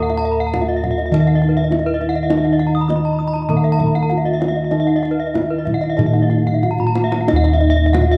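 Round, beating bronze bossed gongs sit up front carrying the bass in this brilliant, ceremonial Balinese gamelan fragment in Eb pelog at 91-102 BPM in a straight 4/4, beneath a metallophone melody, a lower metallophone accompaniment, and two bright horn-mallet metallophones spinning high arpeggios that shimmer with the beating of paired tuning, one set struck with mellow padded disc mallets, while a tight, vintage, band-limited kendang played with hard hands stays in the background and adds a fill from 6.5 to 7.3 seconds, all within light reverb and a dark production.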